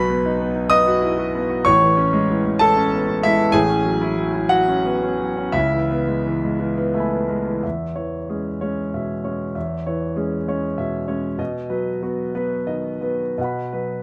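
A clear concert grand piano plays alone in this hopeful, tender piece of neoclassical minimalist piano in a rubato 6/8, its deep bass and long sustain set up front in a small room's moderate reverb as the harmony moves from B through Amaj7, F#m7/A and C#m7 before a new section at 7.6 seconds settles on E6 and returns to B.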